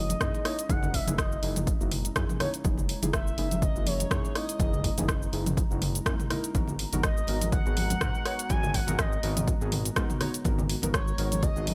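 Driving and hypnotic, this short cut from a longer afro house track moves at 123 BPM in 4/4 with a light 16th-note swing, and it sits on an F#13 chord before shifting to G#m9 at 6.5 seconds. A punchy, layered electronic kick anchors the groove, joined by an up-front deep house kit of cabasa, hi-hat, rim click and toms, while low-tuned acoustic congas with a thick-skinned tone sit in the background of a small room. Underneath, a smooth sawtooth-and-square synth bass with vibrato holds the low end and pumps against the kick, and a moody, detuned analog pad with a sub octave and a moving notch sustains dark chords behind everything. Soft, wave-folded chord stabs with a decaying envelope, colored by chorus and digital delay, punctuate the harmony with a deep, mellow character. On top, an expressive sawtooth lead with vibrato and a moving notch sings a melody between C#5 and G#5, its tone thickened by analog chorus and trailed by dub echo, all set in a digital ambience.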